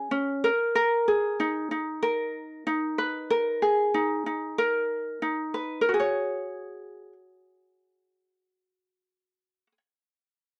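A light, fingerpicked acoustic ukulele sits up front in this sunny, heartfelt pop fragment at 94 BPM in F# major, moving from G#madd9 to F#sus2 at 5.9 seconds, with moderate studio reverb and the soft grain of a home cassette recording.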